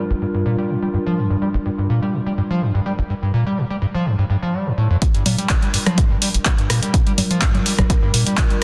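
A straight 4/4 acid house groove drives this raw, gritty clip, cut from a longer piece and resting on a single Gm7 chord. From the start, an overdriven acid bass riff sits up front: squelchy, resonant and saturated, with a fast-attack filter pluck that decays, coloured by lush chorus and pumping from sidechain compression. Behind it, a dark, warbling pad holds sustained chords with a slow attack and long release, its detuned, lo-fi tone carrying a nostalgic haze through chorus, built-in reverb and the same pumping. At 5.0 seconds the drop arrives as a punchy electronic kick and an analog drum machine enter together, tape-toned and re-recorded in a small room. The drum machine's congas, handclaps, hi-hat and rim click are dulled by low-pass filtering on the hats, percussion, snare and room. A moderate digital hall reverb adds ambience, and the dense, heavily limited master keeps the sound loud and dense.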